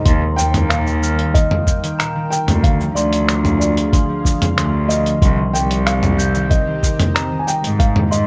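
A dark, warm sound with little reverb carries this delicate, intimate folktronica excerpt in C minor at 93 BPM, where a muffled, pitched-down electronic kick and lo-fi sampler-style kit of finger snaps, hi-hat, shaker and toms sit overdriven up front beside a nasal, gut-string bowed cello with tube saturation on the bass, while a felt-muted upright piano carries the melody with delay, a soft glockenspiel played with rubber mallets adds a bell-like second line, and a fingerpicked concert harp and detuned sawtooth pad with chorus sit in the background over Eb, Ddim and Cm.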